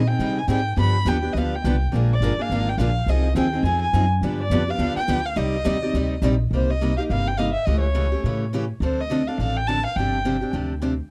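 Acoustic string swing in the jazz manouche style, this virtuosic, swinging 11-second excerpt at 209 BPM in C minor sets a dark, woody bowed violin melody with vibrato and tape echo over two bright, boxy picked parlour guitars, one with audible finger squeak and the other with fresh strings dropping out at 6.3 seconds, and a thumpy pizzicato gut-string upright bass, with the violin, bass and squeaking guitar up front in a dry, close 1970s-style studio sound, moving from an Abmaj7 opening to a G7sus4 close.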